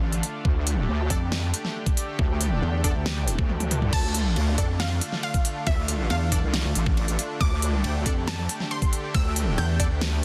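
Heavy wobble dubstep excerpt at 138 BPM in a half-time 4/4 feel and D minor, menacing and aggressive, where a saturated, detuned square-and-sine wobble bass and a pulsing, mellow pluck wobble bass, both treated with chorus and overdrive, sit up front beside a knocking layered electronic kick and a big-room dance kit of huge snare, crisp hi-hat, ride, crash and toms, while a lush, warbling pad with chorus pumps under sidechain, a very quiet punchy supersaw stab cuts in from 1.1 s, and after a drum fill at 3.5 s a bright, ring-modulated unison pluck with a filter sweep, 12-bit sampler grit and delay enters at 3.9 s, the whole set in a dry, dense, heavily limited mix.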